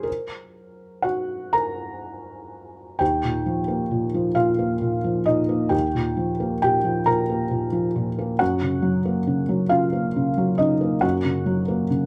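A close, intimate sound with light reverb frames this short excerpt of peaceful, tender neoclassical minimalist piano, played in a rubato 6/8. A felt-muted upright piano plays solo throughout, its mellow, short-sustained tone sitting up front with the natural, audible noise of its action, tuned slightly low to A4 = 438 Hz. The harmony rests on Gb, moves to Ebadd9 at 3.0 seconds as a new section begins, and returns to Gb at 8.4 seconds.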